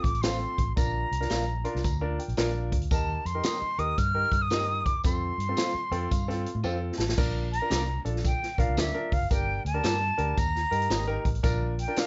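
An airy silver concert flute leads this joyful, uptempo 1960s-style soul clip at 112 BPM in Bb major, carrying the melody up front with a tongued attack and a slightly unsteady vibrato. Beneath it, a grand piano with short sustain plays accompaniment and adds fills. A dark, round, foam-muted fingered electric bass holds the low end, and a swinging big-band drum kit with a punchy kick and medium-tuned snare sits up front in a natural studio room, with crash cymbal and hi-hat over a swung 4/4 feel. Almost at once a picked, compressed electric guitar through a small old amp, slightly broken-up, joins with stabs, while a jingly tambourine stays in the background. A drum fill at 6.6 seconds leads into a new section at 7.2 seconds, where the harmony moves through Bb, Gm and Eb before settling back on Bb. The mix has a light reverb and a soft, rolled-off top end, giving the whole clip a gentle, warm glow.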